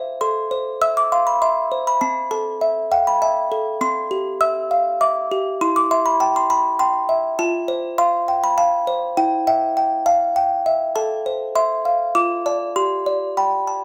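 Dreamy and tender, this short classical lullaby for music box drifts along in a gentle 3/4 at 100 BPM, set in A minor with the tuning sitting slightly below standard pitch. A lone music box carries the whole piece from the start at 0.0 seconds to the end at 13.8 seconds, spanning C4 up to E6. Its delicate, tinkling plucked tone has the small-box character of the instrument, slightly out of tune and airy, and it sits up front in the sound. The harmony moves from A minor through C and F to an E minor chord with an added eleventh before returning home and turning through D minor to G as the passage is cut from a longer piece. Close, detailed microphones and a light reverb keep every note intimate and clear.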